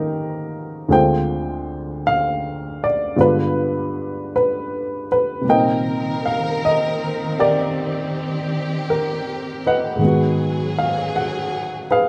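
Swung eighths at a slow 53 BPM in 4/4 carry this tender, late-night jazz ballad fragment, where a dark, intimate baby grand piano sits up front with audible action noise and short sustain as it moves through Abmaj9, Dm7b5 and G7b9, and a smooth-topped bowed string section joins at 5.5 s with expressive vibrato and portamento over Cm9 and a closing Abm7, all under light reverb and lossy compression artefacts.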